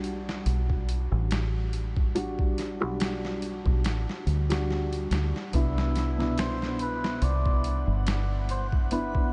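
A cup-muted trumpet, veiled and distant with a touch of 12-bit sampler grit and tape echo, enters at 5.6 s to carry a soft, classical-style solo line between E4 and D5 in this smoky, dark trip hop excerpt. Beneath it, a boom bap sampler-style kit sits up front, pitched down and compressed, with a thumpy kick, medium-tuned snare and hi-hat set in a studio reverb at 71 BPM with a light 16th-note swing. A deep dub fingered electric bass, round and foam-muted, holds the low end from G1 to D2, while a felt-muted upright piano with audible action noise, harmonic tremolo and tape echo voices mellow, intimate chords from A13sus4 to Cmaj7 in A dorian. From 6.5 s a reversed, granular texture sustains an F#5 far in the background. The whole mix is dreamy and soaked in a huge ambient reverb, its top end rolled off for a hazy, smoky feel.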